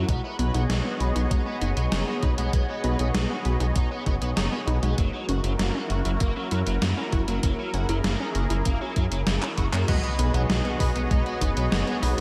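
Synthwave at 98 BPM in B major, uplifting and dreamy, cut from a longer piece. Throughout, a lush, thick unison pad holds sustained chords with chorus, phaser and sidechain pumping, while a punchy unison pluck sits in the background with arpeggios through digital delay and slapback echo. A biting, overdriven, double-tracked electric guitar plays a riff, a dark, detuned saw bass rumbles up front, and a thumpy, tape-warm kick plays alongside a gated 80s drum machine of snare, handclaps, hi-hat and crash. A drum fill at 9.4 seconds leads into a new section at 9.9 seconds, where a glossy, retro chorused polysynth adds stabs over a very quiet impact, all set in a lush hall reverb with a big arena sound.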